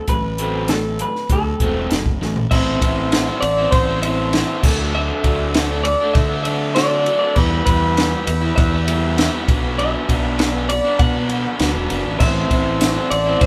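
Restless and bittersweet, this indie rock excerpt moves at 99 BPM in a straight 4/4, sitting in A dorian with tuning at A4 = 435 Hz. A lo-fi, compressed lead guitar through a small old amp carries the melody with a slightly broken-up edge. Beneath it, a double-tracked, crunchy overdriven guitar plays the riff, and a fingered electric bass adds growling fuzz. The compact cocktail kit sits up front, dry and acoustic with a punchy kick, a high-tuned snare and dark cymbals, and a drum fill at 2.2 s leads into the next section. From 2.5 s a vintage combo organ holds buzzy chords in the background over a progression running from Am through Dadd9, Em and Bm and back to Am, and a jingly tambourine appears briefly at 12.8 s. The band plays live together in a stone room with moderate reverb, lending the performance an immediate, roomy sound.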